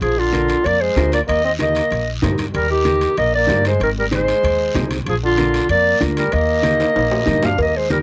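A clear, roomy clarinet sits up front with the melody of this joyful, danceable cumbia excerpt at 190 BPM in Eb major, its line colored by a cassette-tape effect, while a bright, punchy trombone with vibrato carries a second line, a woody pizzicato upright bass anchors the low end, a dark, clean electric guitar enters at 0.3 s, distant low-tuned congas and ringing timbales and cowbell keep the groove in the background alongside a raspy guiro, a drum fill arrives at 6.8 s, and the whole excerpt has the character of a home cassette recording in a moderate booth.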